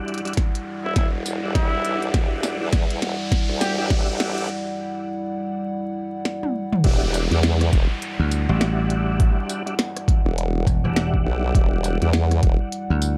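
A swung 102 BPM glitch hop groove in E minor struts with playful swagger, as a gritty overdriven kick and clicky, tape-warm glitch kit drive a sawtooth formant-sweep wobble bass beneath a dark detuned analog pad, smooth tonewheel organ stabs with slow rotary and tape echo, a distant, roomy trumpet melody from 0.8 to 3.9 seconds, and riser and downlifter effects running through a build-up and break, past the drop at 6.8 seconds and on to 11.6 seconds. After the drop, a punchy, foam-muted thumbed slap bass enters at 8.2 seconds over vinyl crackle in this cut from a longer piece.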